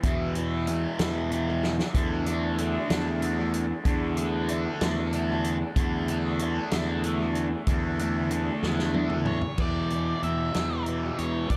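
Mysterious and dark, this short psychedelic rock excerpt moves at a slow 63 BPM in 6/8, with a bright, double-tracked fuzz guitar riff spanning E2 to D4 through phaser and dub echo over a round, overdriven fingered bass holding E2 and a punchy vintage drum kit with drum fills at 1.6 and 8.6 seconds, before an octave-fuzz lead guitar enters at 9.3 seconds with a dark melody between C#5 and E5, all set in a small, echo-heavy room as the chords move from E5 to D5/E and back to E5.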